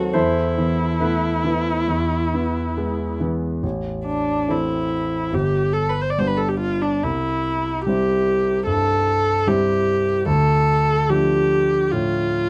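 A single bowed viola and a concert grand piano begin together in this elegiac, yearning excerpt of a romantic classical duo, the viola close and up front with warm vibrato, soft attacks and expressive portamento over the piano's natural, deep-bassed accompaniment, as the rubato 4/4 opening on Esus4 and E gives way at 3.6 seconds to a second passage through Am, G, C and Dm in a lightly reverberant room.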